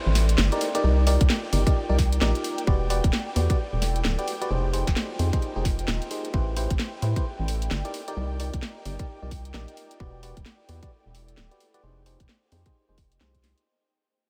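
Skippy and bouncy, this swung two-step UK garage clip pairs a tight, up-front electronic kick and a garage kit's cracking snare and hi-hats with a rubbery, hollow square bass that pumps under sidechain, while glassy, bell-like FM electric piano stabs move through a filter sweep and tape echo over a ninth-chord progression, an ethereal pad with tremolo sits in the background, and a very quiet, nostalgic lo-fi pad warbles alongside, all in light digital ambience and fading out across its 13.7 seconds.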